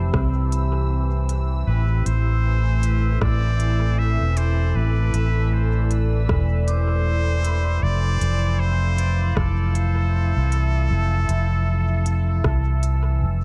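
Ambient dub at 78 BPM with a 16th-note swing, meditative and deep, built on a growly, up-front fingered electric bass and a dark, detuned sawtooth pad with chorus and built-in reverb, while a bright hard-mallet vibraphone arpeggiates through analog delay under a filter sweep, a resonant bubbling stepped-filter texture hovers in the background, an overdriven electronic kick re-recorded in a large room and an electronic kit with smooth hi-hats, rim clicks and dub echo keep time, and a nasal straight-muted trumpet carries the melody with vibrato from 1.7 seconds over chords moving from a rootless Fmaj9 to Am11 and back, in an echo-heavy mix with little reverb cut from a longer piece.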